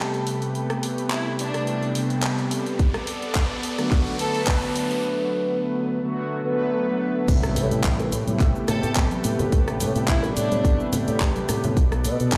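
Bathed in stone-room reverb as if played on a big sound system in a bare room, this sensual, cosmic nu-disco excerpt at 107 BPM in A dorian sets round, dark synth brass with cassette-tape grit and dub echo over a lush, warbling detuned pad and a light-vibrato chamber violin section, builds with a background riser and a pop kit of cabasa, handclaps and rim clicks as a punchy electronic kick joins at 2.8 s, then drops at 7.3 s into an impact, envelope-filtered fingered bass and soft-handed bongos and congas over Am9 and Bm7 chords.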